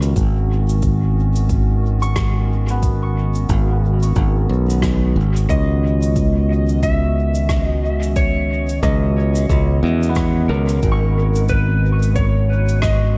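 A warbly, detuned pad holds dark, nostalgic chords under a bright, growly fingered bass, with cabasa and rim click carrying dub echo and an electronic kick drum thumping deep from 0.2 seconds in this deep, meditative ambient dub excerpt in C# minor at 90 BPM with a swung 16th feel. A background concert harp rings out thumb-plucked arpeggios through dub echo from 2.0 seconds, and a slightly broken-up, compressed electric slide guitar takes the melody at 5.5 seconds as the chords move from G#m7 to C#m9 and then G#m9. The echo-heavy mix keeps the bass up front while the drums sit in a small room ambience.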